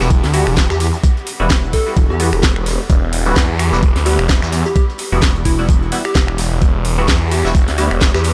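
A swaggering, aggressive bass house excerpt in E minor at 129 BPM opens on an Emadd9 chord, with a thick, swirling detuned saw bass sitting up front, its phaser and sidechain pumping giving it a saturated, restless weight. Alongside it from the first moment, a nasal, band-passed chord stab with bright, decaying hits runs through phaser, lush chorus, cassette tape character and tape echo, pumping with the sidechain until 7.9 seconds. A punchy, catchy plucky unison lead carries the melody in the background, its square-wave tone evolving through a filter sweep and colored by cassette tape and tape echo. An overdriven, knocking electronic kick lands up front at 0.1 seconds, and at 0.2 seconds a house drum kit adds a cracking snare, metallic hats and finger snaps in a touch of studio ambience. Underneath, a very quiet vintage brush kit with a medium-tuned snare and rolled-off top lends an acoustic, natural texture to the swung sixteenth-note groove, all set in light reverb and digital ambience.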